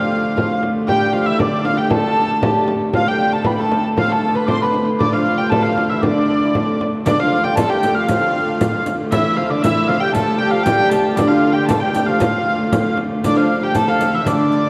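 Ancient and mysterious in mood, this medieval dance moves at 117 BPM in a straight 2/4 in D dorian, heard as a short cut from a longer piece. A dark, nasal hurdy-gurdy carries the melody up front, its airy, reedy bow sound spanning D5 to D6, while a second hurdy-gurdy holds a woody, smooth-topped drone between D3 and A3 underneath. In the background, a delicate fingerpicked lute with nylon double strings and a fiddle with a gut-string tone weave second lines, the lute lower and the fiddle in the middle register. A small, bright frame drum sounds close and dry from 0.4 seconds, and a riq with dark jingles and hard hands joins quietly in the background at 7.1 seconds as the opening section repeats. The whole sits in a lingering church reverb with a dark, warm production.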